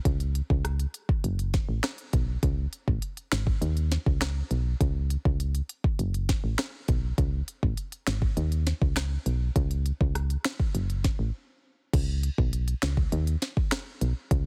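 Dancehall at 101 BPM in a straight 4/4, this short cut from a longer piece has a hypnotic, sultry mood. A solid FM bass runs from 0.1 to 14.5 seconds, its punchy, round digital tone striking with a fast attack and decaying into a dark low end between F#1 and D#2. An electronic afro-pop drum kit plays alongside it, pairing a deep kick and sharp snare with crisp hi-hats, rim clicks, finger snaps and crash cymbal. Both parts sit up front in a dry mix with little reverb, pressed into a heavily compressed, radio-style sound. A brief break arrives at 11.3 seconds, and a new section begins at 11.9 seconds and carries through to the close.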